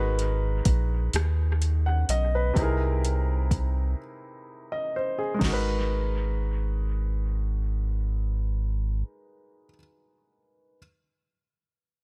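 A dry, echo-heavy mix frames this short, sultry late-night slow R&B cut in six-eight, built on G#m9 and C7alt harmonies. A clear, natural baby grand piano carries the accompaniment up front alongside a rubbery, hollow square bass with a nasal, resonant bounce. A soft-kicked electronic drum kit with a fat snare, metallic hats and rim clicks adds vintage sampler grit and dub echo before dropping out at 5.6 seconds, leaving the bass to stop at 9.0 seconds and the piano to ring on alone until 10.8 seconds.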